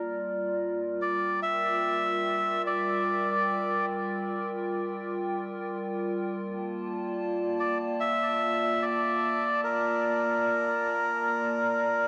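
A deep, hazy wash of lush hall reverb surrounds this short ambient excerpt in G dorian, drifting at 73 BPM in a straight 4/4. A warbling, nostalgic pad with a slow attack and long release holds dark, chorused chords, moving from Gm7 to Bbmaj7 at 6.4 seconds. From 1.0 second a reedy, breathy melodica carries the melody up front, its nasal tone roughened by 12-bit sampler grit and trailed by dub echo.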